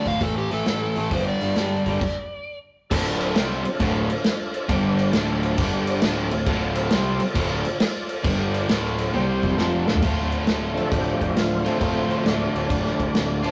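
Gritty, smoky blues rock with a southern rock edge swings in D minor at 135 BPM, as a dark slide guitar sings a brief melody over a bright, double-tracked crunchy guitar riff, a round fuzz bass, a vintage kit with a punchy kick and dark cymbals, and a thick background tonewheel organ through a slow rotary speaker, then a stop at 2.0 seconds and a drum fill at 9.1 seconds lead into the organ's solo at 10.0 seconds, all captured in a rough rehearsal-room recording with stone room reverb.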